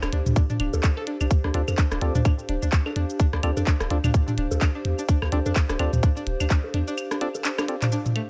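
A twangy, string-like resonator pluck riff with chorus and delay opens this minimal techno excerpt in D minor at 127 BPM, over a deep, punchy sub bass, a clicky electronic kit of cabasa, handclaps and hi-hat, booming analog drum machine bongos, claves, rim click and toms, and a warbling, lo-fi tape-like pad with chorus and built-in reverb, the pluck, bass and pad all pumping to the sidechain over a swung 16th-note feel. A tight, up-front electronic kick enters at 0.4 s, and at 1.5 s a hollow, dark organ stab with dub echo slips in behind, while the sub bass drops out at 6.8 s. The mood is clinical and cool, set in a digital ambience and resting on a single Dm7 chord.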